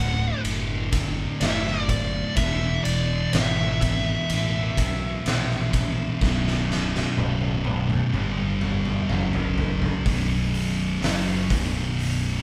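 Stoner and doom metal at a slow, straight crawl, ominous and heavy, with two thick, dark fuzz guitars grinding out the riff beside a growly overdriven fingered bass while a picked fuzz lead with wah sings a high melody until 9.1 seconds, all driven by an oversized low-tuned drum kit up front, boomy in the kick and fat in the snare, whose fill from 6.2 to 10.1 seconds leads into a closing section of this live-in-one-room excerpt under light reverb.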